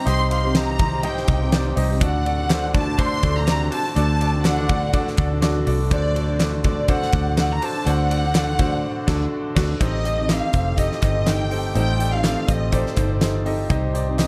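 Driving and dramatic, this piano-driven pop excerpt has a gentle swing, with a lush, expressive violin section carrying the melody over clear, polished grand piano accompaniment whose action noise is audible, a reedy, breathing harmonium holding very quiet sustained chords, and a dark, full-bodied fingerpicked acoustic guitar riff in the background. A round, foam-muted electric bass sits up front beside a big-room acoustic drum kit with a fat snare and punchy kick. A mellow, distant French horn section with delay adds a second line from 2.3 s, crisp, saturated handclaps join at 2.5 s, and the band hits an accent at 8.8 s, all within a dark production and light reverb.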